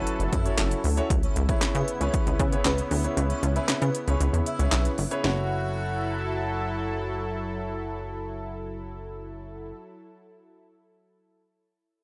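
An airy, dreamy lead with chorus and tape echo carries the melody over a deep-toned concert grand and a thick, detuned unison pad from the opening, all three pumping against the sidechain in this driving dance-pop excerpt, with a plucky, funky, wave-folded analog bass joining almost at once. A punchy, overdriven house kit of cracking snare, crisp hats, handclaps and kick pushes the drop from the front of the mix, though the kick is muted at 3.2 seconds and the whole kit falls away at 5.4 seconds. The lead ends at 6.8 seconds, leaving piano, pad and bass over a dry, gritty hardware sound.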